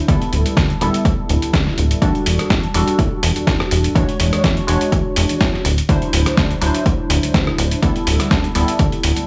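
A plucky analog bass anchors this sensual, funky slice of filtered disco house at 124 BPM, its sawtooth and pulse-wave tones snapping with a fast attack and decaying filter pluck under low-pass filtering and sidechain pumping. A detuned, mellow polysynth comp with chorus and phaser sits over chords moving from G69/D through Em11, E13 and D9, while a punchy, overdriven electronic kick and a gritty, dusty sampler-style kit of hi-hat, rim click and medium-tuned snare drive a lightly swung groove. The sound is dry with small room ambience, and this short cut from a longer piece runs to about 9.3 seconds.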